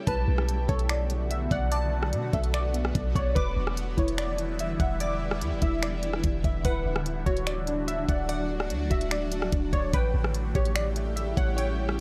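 A deep, boomy 808-style bass with a dark sine tone sits up front in this half-time cloud-rap excerpt, joined by a trap kit of knocking kick, crisp hi-hat, finger snaps and rim clicks as the chords cycle through Bm7, Em7, D and A7. Above them, a warbly, lo-fi sawtooth pluck carries the melody with chorus and analog delay, while a glassy, crystalline wavetable pluck spins arpeggios through its own chorus and delay. A shimmering ambient pad holds sustained chords with phaser, reverb and sidechain pumping, giving a spacious, ethereal mood to an otherwise dry, gritty hardware recording.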